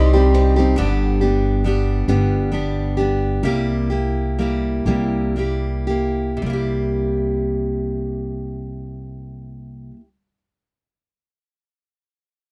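Close and dry, this intimate, reflective acoustic folk fragment in 6/8 moves at a slow 36-47 BPM and slows down between 0.8 and 6.4 seconds, its harmony passing from C minor through G to C7. A full-bodied, picked steel-string dreadnought guitar sits up front carrying the accompaniment, joined by a dark, pizzicato upright bass. A bright, brilliant upright piano with long sustain plays arpeggios only until 0.9 seconds, while a very quiet, dark ride cymbal touches in briefly at 0.3 seconds.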